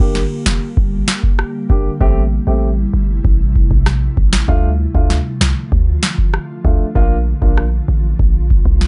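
Sultry and hypnotic, this short dancehall excerpt rides a straight 4/4 groove that feels cut from a longer piece. A booming analog drum machine sits up front with a deep kick, crisp snare and rim click, its sound tape-warm and electronic. Beneath it, a warm 808-style bass plays sine-like notes with a fast attack that decay into a boomy, mellow low end. A dark concert grand piano adds smooth, vintage-toned accompaniment until 7.6 seconds, while an ethereal, airy pad holds detuned sawtooth chords with a slow attack, ensemble chorus, built-in reverb and sidechain pumping through to 8.9 seconds. The chords move from Gm to Am7, Dm and Bb in a dark, dry production with a soft top end.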